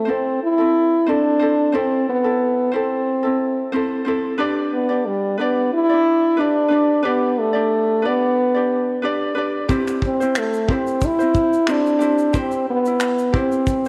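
This acoustic pop fragment moves at a reflective, tender 90 BPM in 4/4 with a light sixteenth-note swing, as a mellow French horn sings a classical-style solo melody with light vibrato over a fingerpicked, light ukulele up front. The harmony passes from Am to G and then to C. At 9.7 seconds a cloth-damped, thuddy drum kit enters with finger snaps, a tight kick and shaker, its top rolled off, while an echo-chamber reverb gives the horn a roomy, distant glow.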